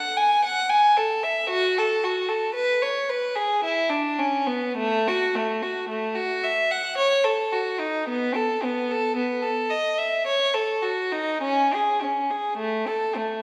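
A wet recital-hall reverb surrounds this brief cut from a longer piece, with the room heard from further back even as the lone violin sits up front. It is a radiant, serene baroque-style suite movement for unaccompanied violin in 3/4, its uneven beats shaped with rubato. Across the full 13.4 seconds, one player draws a rich, reedy, gut-string tone in period style with light vibrato, ranging from A3 to G#5.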